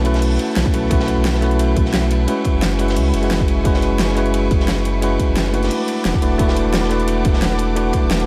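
Liquid drum and bass with a rolling, melancholic mood, this short cut places a bell-like tine electric piano with dub echo up front over a deep, round sub bass, while a distant, smooth symphonic string section holds sustained chords that pump under sidechain, and a gritty, saturated breakbeat kit with dark cymbals layers with a pop kit's fat snare and bright hats plus a punchy electronic kick entering at 0.7 s, set in a small room with light reverb.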